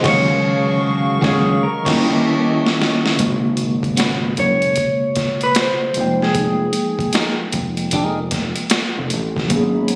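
A smooth, soulful neo-soul and R&B groove at 76 BPM in 4/4, with a swung sixteenth-note feel, moving through minor eleventh chords such as Ebm11, Abm11 and Fm11. A dark, lo-fi electric guitar through a small old amp carries the melody until 7.4 seconds, alongside a brighter, twangy second guitar at the edge of break-up, both picked and bathed in plate reverb. A mellow tine electric piano heard through its built-in speakers supplies the accompaniment, while a fat, detuned sawtooth analog bass with a filter sweep holds down the low end. Up front, a gritty, pitched-down boom bap sampler-style kit with a thumpy kick and high-tuned snare drives the beat, and the band hits an accent through the opening 3.2 seconds, capped by a drum fill from 2.4 seconds. A hollow, flute-like pad with chorus sustains chords at the start and returns briefly near the end of this cut from a longer piece, which sounds as if captured on a phone in a room with moderate studio reverb and compression.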